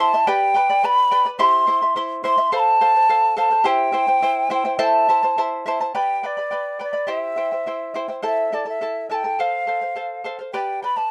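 Andean folk in an earthy, wistful mood, this short excerpt moves at 105 BPM in a straight 2/4, with a hollow, airy cane quena carrying the melody up front, its soft attack and vibrato lending it a breathy tenderness. Beneath it, a bright, fingerpicked charango plays accompaniment throughout, its double strings, some doubled at the octave, giving a shimmering sparkle. The dry, close 1970s-style studio sound with light reverb keeps both instruments intimate as the music passes from one section into a second at 6.0 seconds over simple chords such as G, C, F and Am.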